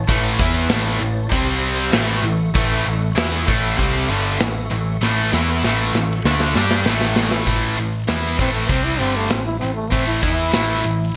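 A clear trombone with light vibrato and a smooth top takes an up-front solo from 8.4 seconds in this powerful, energetic hard rock excerpt, riding over three picked guitar riffs (one tight and distorted, one overdriven in the background, and one crunchy, double-tracked with analog chorus that stops at 7.5 seconds), a dark, round hollow-body bass, a punchy big rock drum kit with gated reverb and a fill from 5.0 seconds, and a soft, flute-like tonewheel organ holding chords through a slow rotary speaker, set in a bright 1980s-style digital production with small room ambience.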